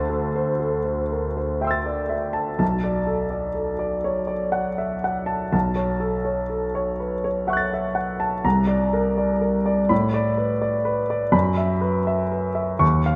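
A lone grand piano opens the recording with a clear, present tone, sitting up front and letting each chord ring with long sustain. The music is impressionist solo piano in a slow, rubato 6/8, moving at about 41 beats per minute counted in dotted quarters, and the mood is mysterious and wistful. Its harmony drifts through open, suspended colors, beginning on C69 over D and passing through Bm7, A69 over B, Csus2 and Asus24 before arriving on F#7sus4 at 11.3 seconds. The piano spans a broad register from B1 up to A6. A moderate scoring-stage reverb surrounds it, and the production has a dark, warm character. This brief passage, cut from a longer piece, lasts 13.2 seconds.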